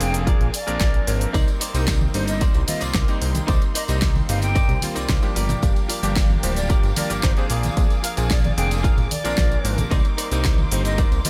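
A short cut from a longer nu-disco track opens with a full band already playing at 112 BPM in C minor: a hollow flute melody set back in the mix with analog delay, a bright, clangy electric grand piano with slapback echo, dark bowed chamber strings holding distant chords that pump against the beat, a thick, detuned sawtooth bass with tube saturation and a filter sweep, and a pop drum kit of fat snare, bright hi-hat and shaker. At 0.3 seconds a clean, direct-recorded electric guitar riff arrives, lush with chorus and slapback echo, alongside a punchy, up-front electronic kick that anchors the straight feel. Tambourine and congas, played with soft hands, join in the background at 1.3 seconds. The harmony moves through Bb7, Cm9, Gm7 and back, giving the groove a cosmic quality. The mix is dry and close, with only a touch of small-room ambience on the drums, and the bass and kick sit firmly at the front.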